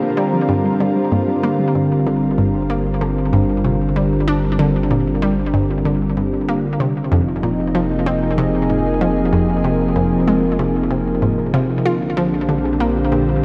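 Ambient, sequencer-driven space music at 95 BPM in 4/4, mysterious and hypnotic, moving from Gm to Fm and then Bb in this short excerpt cut from a longer piece. A lush, thick unison pad holds sustained chords up front, drenched in chorus and shimmer reverb, while a bright analog pluck carries a detuned riff through delay and shimmer and a very quiet, dark, warbling pluck traces arpeggios in the background. A deep sine sub bass enters at 1.8 seconds, and the whole dreamy mix sits soaked in plate reverb.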